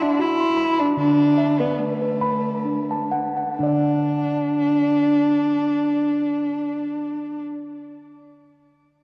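A dark, woody cello played by one bowed player carries the melody up front, its sul tasto tone colored with vibrato and portamento, while a round, ringing steel tongue drum struck with soft rubber mallets spreads mellow arpeggios alongside it, both bathed in shimmer reverb and diffuse ambient delay. This dreamy, calm fragment of a longer meditative world piece moves in 3/4 at 62-79 BPM in D major pentatonic, slowing over its first 3.6 seconds across G and D chords before the harmony drops away. The cello stops at 7.4 seconds and the drum at 7.6, all heard through a wet echo-chamber reverb and the warbly pitch drift of worn old cassette tape.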